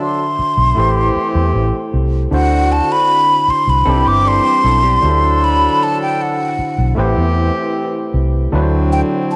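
A straight 4/4 pulse at 77 BPM sets up this smooth, silky soul excerpt, cut from a longer piece and built over a progression moving through D7, Am7 and Cmaj7 chords. Up front, a breathy, mellow silver concert flute carries the melody high in its register, close-miked and hollow with vibrato and tongued notes, trailed by tape echo. Beneath it, an overdriven tine electric piano played through a combo amp supplies bright, barky, gritty accompaniment, while a horn section adds jazz-style stabs with light vibrato and a smooth top, also touched by tape echo. A dark, foam-muted fingered electric bass enters at 0.4 seconds, round and punchy in the low register. Briefly, from 3.9 to 5.2 seconds, a slightly broken-up, lo-fi electric guitar through a small old amp slips in a picked riff in the background, all set in light reverb and small room ambience.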